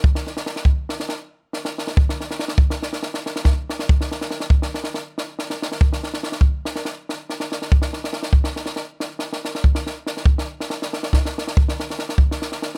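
A compact cocktail drum kit opens this fiery, restless Balkan folk excerpt in a straight 9/8 at 281 BPM (counted in eighths), its punchy kick and high-tuned snare sounding dry and up front through close, detailed microphones with little reverb.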